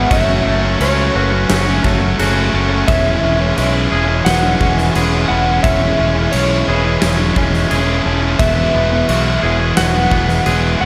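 Post-rock at 87 BPM in a euphoric, hopeful mood, this short cut from a longer piece layers a dark slide guitar melody with slapback echo over a bright overdriven guitar riff alongside a thick fuzz guitar riff in the background, arpeggios from a twangy clean guitar and a lo-fi guitar through a small old amp, a very quiet reedy harmonium holding sustained chords, an up-front bright fingered bass, and a big rock kit with a fat snare and punchy kick entering at 0.1 seconds, all moving through F#m7, C#m/E and Eadd9 inside a lush hall reverb that gives a big arena sound.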